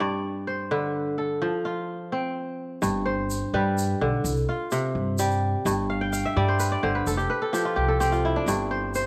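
A fingerpicked kora opens alone, its crisp, ringing arpeggios sitting up front in a hypnotic, flowing West African string piece in G mixolydian, moving at 85 BPM in a straight 12/8. At 2.8 seconds a woody, thumpy pizzicato upright bass enters below it, joined by a grainy egg shaker that sounds distant in a large room, and the kora adds a fill from 5.9 seconds. A moderate echo-chamber reverb surrounds this short cut from a longer piece.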